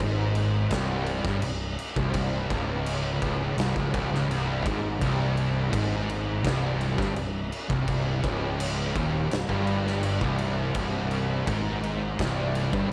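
This excerpt of heavy, hypnotic stoner and doom metal opens at once on a C5 chord, with three fuzz guitars, bass and drums sounding together from the first beat at a slow 84 BPM in straight 4/4, in C minor. An oversized, low-tuned acoustic drum kit sits up front, its boomy kick, medium-tuned snare and dark crash cymbal saturated and gritty in a big, pumping room. Behind it, three picked fuzz guitars play a low riff: one is bright, double-tracked and compressed, while two thicker, dark-toned guitars add weight, one of them very quiet. Underneath, a fingered electric bass, amped and overdriven, adds a growly low end. The overall sound is dry, with little reverb, and the 12.9-second fragment stays on a single section cut from a longer piece.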